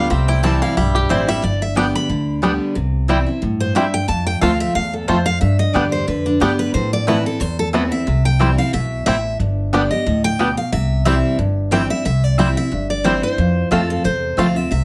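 Rustic and joyful, this swung bluegrass excerpt features a bright, up-front picked dreadnought guitar soloing the melody with plate reverb until 12.1 seconds over a second full-bodied picked guitar's accompaniment, twangy fingerpicked banjo arpeggios, mellow double-strung mandolin stabs entering at 0.4 seconds, and a woody, thumpy pizzicato upright bass in a moderately reverberant studio.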